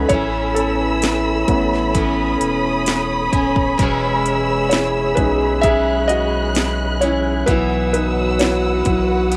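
A small room ambience frames this emotional, heartfelt pop ballad in E major, moving at 65 BPM in a straight 4/4 over Aadd9, E6 and Bsus4 chords. A soft, felt-muted upright piano takes the solo spotlight, backed by dark, lush bowed strings with expressive vibrato, full-bodied picked steel-string guitar arpeggios, and a thick, saturated sub bass. A mellow French horn section carries a second line with light vibrato, while an electronic house drum kit adds a punchy kick, cracking snare and metallic hats, tape-warmed and re-recorded in a small room.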